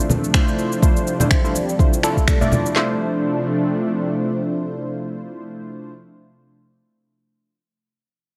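Warm and earthy, this short excerpt of afro house moves at 124 BPM in D minor, with a 56% swing on the sixteenths and a tuning reference of A4 = 438 Hz. A smooth, detuned sawtooth pad sustains chords, opening on Dm7, its soft attack colored by chorus and a moving notch, and it breathes with sidechain pumping. Round, fast-attack analog key stabs sit up front above it, decaying through chorus, phaser, a low-pass filter sweep and digital delay, also pumping with the sidechain. Low-tuned congas with thick skins, played by soft hands in a live room, sit alongside a tape-colored electronic shaker and finger snaps, while a produced afro-pop kit enters at 0.3 seconds with a deep kick, woody snare and handclaps pushed forward in the mix. The percussion drops away before 3 seconds, around where the second section begins at 2.8 seconds, leaving the pad and keys to carry on in light reverb and digital ambience.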